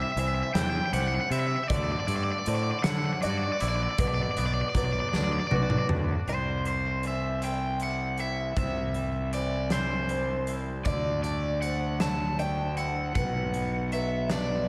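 Cinematic and euphoric, this post-rock excerpt moves at a slow 52 BPM in a straight 6/8, rooted in C lydian with chords shifting from C through Dadd9 to Bm, then returning through C, Dsus2 and Bm. A bright, crunchy overdriven guitar carries the melody up front, dressed in spring reverb, slapback echo and digital delay. Behind it, a felt-muted upright piano adds soft, boxy arpeggios, while a clean, twangy electric guitar with subtle chorus spins its own arpeggios, both sharing the slapback and delay. A fuzz-laden fingered electric bass sits punchy and up front, and a big rock drum kit with a dark, smooth tone, punchy kick and medium-tuned snare enters at 0.2 seconds, rolling through a drum fill from 5.1 to 6.3 seconds into the second section. A lush hall reverb wraps the whole arrangement in a big arena sound.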